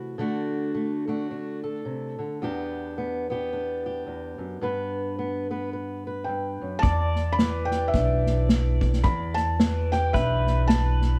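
Swung eighth notes in an easy 4/4 give this reflective, wistful acoustic folk piece a gentle lilt, opening with a dark, fingerpicked steel-string acoustic guitar alone at 0.0 seconds, moving through D, Em7 and G. At 6.2 seconds a felt-muted upright piano takes the melody high in its range, its mellow, intimate tone carrying audible action noise and a vintage softness. From 6.8 seconds the band fills out as the harmony returns to Em7: a woody, thumpy pizzicato upright bass on gut strings sits up front; an unplugged drum kit played with bundle sticks adds a tight kick and medium-tuned snare in a roomy, distant studio space; and a bright, twangy pedal steel guitar traces a quiet second line with clean, compressed slide tone and volume swells. Light reverb places the players a little further back in the room, keeping the short cut from a longer piece calm and reflective.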